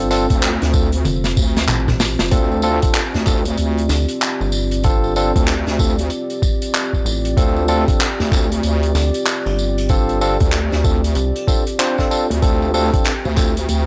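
A heavy, up-front wobble bass with chorus and overdrive holds D2 through this swaggering, playful glitch hop excerpt at 95 BPM, swung on the 16ths in D minor pentatonic, joined by a rubbery, hollow square bass until 11.3 s, barky tine electric piano stabs pushed through a combo amp with analog delay, a deep, moody analog pad sustaining a Dm7 chord with 12-bit sampler grit, sidechain pumping on both, a thumpy, pitched-down electronic kick, and an airy acoustic country kit of handclaps, hi-hat, snare, tambourine and toms, with a drum fill at 1.1 s, the mix sounding dry and rough in a small room.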